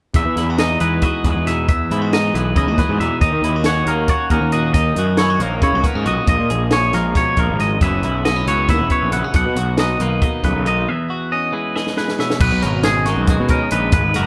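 A bright, lightly reverberant live-room sound carries this intricate excerpt of math rock and midwest emo in 7/8 at 274 BPM in E lydian, where a growly fuzz bass and a dry compact cocktail kit with dark cymbals and a high-tuned snare sit up front beneath a compressed, warm twelve-string electric guitar and a twangy, spring-reverbed electric guitar spinning arpeggios through chords from Emaj9 to E69, before a break at 10.9 seconds and a drum fill at 11.8 seconds lead into a new section on B69 at 12.4 seconds.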